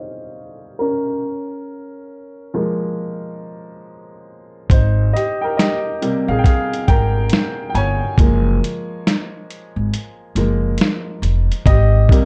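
A lazy, swung 4/4 groove sits at the heart of this mellow, cosy lo-fi hip hop clip, cut from a longer piece. A clear, woody upright piano opens alone, carrying a solo through a filter sweep, its smooth vintage tone dulled by cassette tape and a low-pass filter as it moves through lush chords like Abmaj9 and Gbmaj9. At 4.7 seconds a pizzicato upright bass with gut strings and a thumpy acoustic body arrives up front, joined by a compressed, muffled, sampler-style drum kit of hi-hat, snare and thumpy kick that sounds re-recorded in a large room. The kick drops out from 9.9 seconds, leaving hi-hat and snare to carry the beat briefly. Light reverb and a dark, warm production wrap the whole scene in a hazy, late-night glow.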